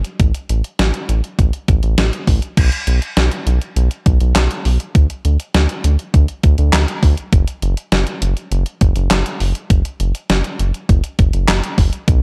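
A dry, close recording with the parts placed up front opens this short synth-pop excerpt, cut from a longer piece, moving at 101 BPM in a straight 4/4 with a cool, nocturnal mood. A clean 12-bit digital drum machine with a sampler-style character plays throughout, from 0.0 to 12.2 seconds, its thumpy kick and fat snare joined by hi-hat, handclaps and crash cymbal. Gated reverb shapes the drums, and their tape-warm sound carries the feel of having been re-recorded in a small room. Beneath them, a round analog bass holds the low end for the full length, sitting between F#1 and D2 with a deep, dark tone. Built from sawtooth and sine waves with ring modulation, the bass has a fast attack and sustained, evolving notes. The arrangement moves into a new section at 2.6 seconds, with both parts continuing to the end of the clip.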